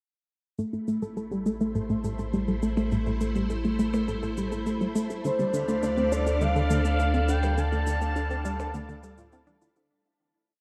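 A smooth, expressive synth lead with vibrato enters at 5.2 s over the shift from Am to Dm, singing arching motif phrases through tape echo in this mysterious, cosmic piece of sequencer-driven space music. Beneath it, a tight, driving sequenced synth repeats an 8-step riff, a soft, round pluck loops a dark 7-step arpeggio that drifts against the bar, a swirling vintage string machine holds phased chords, and a deep, nasal analog bass sits up front on sustained roots. A light machine pulse of cabasa and high conga blips ticks along, while a bubbling, resonant filter texture on a held high note sits in the background, all bathed in a vast, echoing reverb with a cassette-tape tint before the fade-out from 6.8 s.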